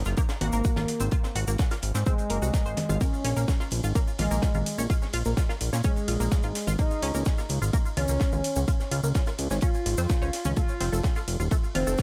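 An echo-heavy mix with light reverb and small-room ambience frames this dramatic, cinematic stretch of melodic techno, cut from a longer piece, at 127 BPM in 4/4 with a straight feel, in Bb minor and tuned to A4 = 438 Hz. A punchy, tape-warm electronic kick sits up front, entering at 0.2 seconds, while a fat, detuned sawtooth analog bass pumps against it from the very start. A tight sequenced synth drives evolving, plucky sawtooth arpeggios, coloured by chorus, analog delay and sidechain pumping. From 0.4 seconds, an expressive portamento lead glides through a smooth, mellow melody with vibrato, subtle chorus and tape echo. The rhythm bed layers a deep house kit with overdriven congas, metallic hats and ride cymbal, an acoustic funk kit of hi-hat and high-tuned snare in the background, and a grainy, bright tube shaker. The harmony moves from Ab to Bbm, then Dbadd9, settling on F at 10.6 seconds.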